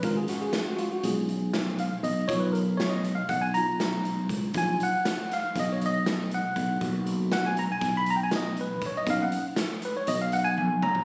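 A bright, clean tine electric piano with analog chorus takes the lead up front in this driving, intricate progressive instrumental excerpt in 9/8, carried by a growly fretless electric bass and a gritty, saturated garage drum kit with a punchy kick and rolled-off top, which closes on a drum fill at 10.6 seconds, all captured on a phone in the room with light reverb.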